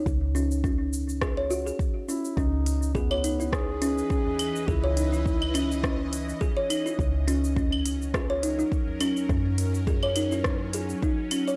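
A lightly swung 104 BPM groove in 4/4 anchors this mystical, meditative organic downtempo piece in C# dorian, with a deep, up-front electronic kick, an overdriven electronic kit of claves, smooth hats, rim click and shaker, and a small, distant udu far back in the mix. Plucked kalimba arpeggios with a thumbnail attack and boxy, up-front tone repeat through analog delay over a soft, round FM bass that pumps and saturates beneath them. A close-miked, folk-style duduk sings a dark vibrato melody from 2.1 s to 6.7 s, and from 3.5 s a bright, detuned string-like drone with phaser and vibrato carries sustained chords through the dry, gritty recording.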